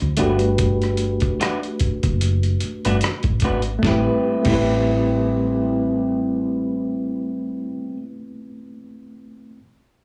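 R&B and neo-soul at 74 BPM in A dorian with a light 16th-note swing, this introspective, late-night excerpt moves from Gmaj9 to Am9 at 3.8 seconds, with a worn, slightly out-of-tune tine electric piano carrying the chords through its built-in speakers, a round, dark fretless bass underneath until 7.7 seconds, a gritty, overdriven sampler-style drum kit with a thumpy kick, hi-hat, rim click, snare and crash that drops out at 4.7 seconds, and a slightly broken-up picked electric guitar adding a second line, all up front in a small room.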